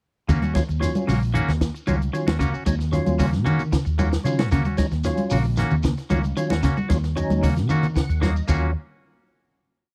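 A dry, close 1970s-style small-room recording carries this short, hypnotic and funky afrobeat groove at 114 BPM on Ebm7, where a round, up-front fretless electric bass with ensemble chorus plays a syncopated riff beneath a compact cocktail drum kit with dark cymbals and a high-tuned snare, background congas, a grainy shekere, a hollow-body semi-hollow electric guitar picking an arpeggiated ostinato, a twangy electric guitar strumming funk stabs in upper chord shapes, and a fat, key-clicking tonewheel organ through slow rotary speaker and chorus vibrato adding rootless syncopated chord stabs, before an organ fill from 7.7 seconds and a drum fill lead into a final hit at 8.7 seconds.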